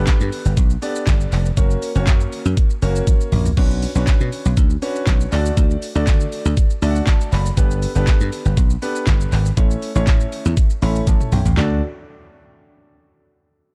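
Dry, dark production frames this upbeat, summery dance-pop excerpt, where a punchy, foam-muted electric slap bass sits up front with a bright, direct tone and sidechain pumping; an electronic, layered pop drum kit drives it with a knocking kick, fat snare, bright hi-hats, shaker, handclaps, toms and crash, adding fills around 3.1 s and 11.1 s; and a smooth, vintage-toned grand piano with deep low end pumps beneath the groove, playing its own fills at 6.6 s and 10.6 s.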